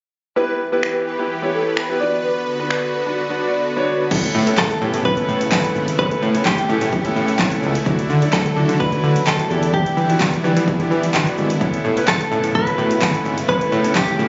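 Dance-pop at 128 BPM, bittersweet and driving, this clip opens with an airy, dreamy lead carrying the melody over a clear grand piano with audible action noise and a lush supersaw pad, both pumping against the punchy kick, fat snare and bright hats of a layered pop drum kit with claps, snaps and shaker, then after a brief silence at 3.6 s a fat detuned analog bass arrives at 4.1 s and a clean, direct-recorded electric guitar with digital delay and a very quiet jingly tambourine join at 4.6 s, all heard through a phone-in-the-room recording with club reverb and a dull top end over chords moving from Em and Bm to Aadd9, Dadd9 and Em7.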